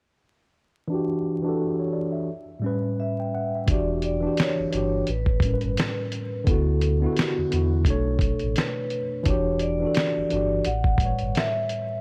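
Reflective and nostalgic, this lo-fi hip hop excerpt moves at 86 BPM in 4/4 with a gentle 16th-note swing, set in E dorian over chords such as Em9, A9, D69 and Bm9. A worn, slightly out-of-tune tine electric piano opens alone at 0.9 seconds, its mellow tone softened by cassette tape character and a filter sweep that runs until 3.7 seconds. At 3.0 seconds a vibraphone with soft mallets enters with the melody, its metallic ring carrying a slow motor vibrato through a low-pass filter and tape echo. From 3.7 seconds a deep sine sub bass with an octave adds full, sustained low end, while a dusty sampler-style drum kit with a thumpy kick, fat snare and hi-hat sits up front with gritty 12-bit texture and a small-room sound. Light reverb and a bed of vinyl crackle wrap the whole piece in a lived-in, faded atmosphere.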